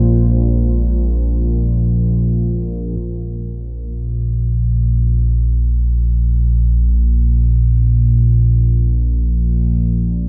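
A huge reverb with a long tail hangs over this ominous, vast dark ambient drone, a short cut from a longer piece in free time, with its top end rolled off. A deep, warbling pad with a vintage, detuned sawtooth character sits in the background holding an F minor chord and fades out by 3.0 seconds, while an up-front analog drone, nasal and evolving with pulse-width modulation and chorus, sustains low beneath it. Once the pad drops away, the drone carries on alone, with a filter sweep moving through it until it ends at 10.3 seconds.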